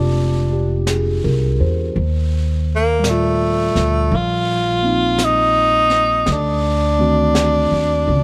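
A light reverb gives this short, smoky jazz ballad cut a soft sense of space, with the tenor saxophone and upright bass sitting up front. The tempo is a slow 56 BPM in 4/4 with a swung eighth-note feel, and the mood is wistful. The breathy, clear tenor saxophone carries the melody as a solo voice, colored by a light vibrato and phrased in a jazz style. Beneath it, a bright tine electric piano supplies clean, direct accompaniment, while the pizzicato upright bass, strung with steel strings, adds a warm, woody tone. A jazz brush kit joins at 0.9 seconds, playing brushed snare, hi-hat and a high-tuned snare in a small-room sound. The harmony moves from Bb9 to Ebmaj9 and then to D7b9.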